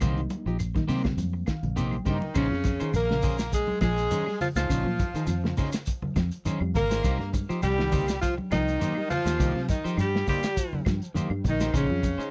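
A reedy electric piano with a fast tremolo opens this hypnotic, funky afrobeat excerpt at 102 BPM in a swung 4/4, playing a short fill before it drops out at 2.3 seconds. Underneath, a crunchy breakbeat kit with dark cymbals, a tight kick and a rolled-off top sits beside a round, foam-muted fingered bass that is up front, while congas and woody claves sit in the background alongside a grainy shekere. Two slightly broken-up electric guitars run throughout, one playing dark arpeggios through a lush chorus and the other a twangy stab part. At 2.1 seconds a bright alto saxophone takes the melody with scooped notes and light vibrato, backed by raspy baritone and tenor saxophones on a lower second line, the tenor carrying a tape echo. The harmony moves between Cm7 and Bbm11 in Bb dorian. The sound is dry and close, in the manner of a 1970s studio recording.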